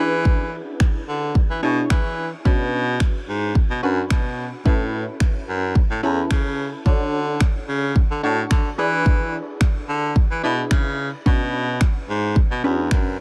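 Dance-pop with a euphoric, summery glow, cut from a longer piece: a clear, smooth-topped baritone saxophone carries the bass line up front with vibrato and sidechain pumping, punchy detuned sawtooth chord stabs with a filter pluck, chorus and phaser pulse beneath, and a layered electronic pop kit of punchy kick and finger snaps drives the straight 4/4 groove through chords moving from E7 to Bmadd9, Aadd9 and Dmaj7 in light reverb.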